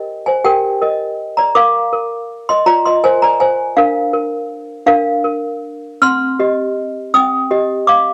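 In a rubato 6/8 sway at 54 dotted-quarter beats per minute, this innocent, dreamy classical lullaby features a solo toy piano, clanky and bell-like with plastic hammers and a slightly out-of-tune ring, ranging from C4 to F6 and sitting up front in a boxy small room, tuned to A4 = 442 Hz and bathed in a moderate spring reverb on a cassette home recording, as it drifts through Eb/G, Bb, Bb/D and Cm across an 8.1-second fragment cut from a longer piece.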